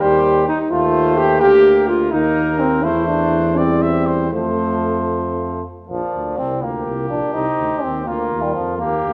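This classical brass quintet piece in a lilting 6/8 has a noble, glowing mood and a flexible rubato feel, and it is cut from a longer work. A warm, softly attacked trumpet carries the melody, while a flugelhorn with light vibrato sits distant and in the background, adding a second line beneath it. A mellow French horn with a smooth top and a brilliant, roomy trombone fill in the accompanying harmony, and an up-front bass trombone anchors the low end. All five instruments play together throughout, and the harmony moves through inversions and seventh chords before a second section opens at 5.9 s. A wet recital-hall reverb gives the ensemble a spacious, resonant setting.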